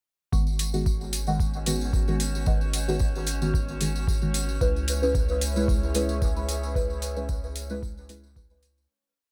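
Up-front, soft chord stabs in a dotted rhythm, one shape moved in parallel and coloured by chorus, phaser, cassette tape, dub echo and sidechain pumping, lead this cavernous, hazy dub techno piece over a round, sidechained analog bass, a deep four-on-the-floor kick, metallic hi-hats, jingly hand-played tambourine sixteenths and an eerie inharmonic drone held high with chorus and reverb, while a dark, detuned pad with chorus and sidechain pumping joins at 4.6 s before the fade-out that begins at 6.0 s.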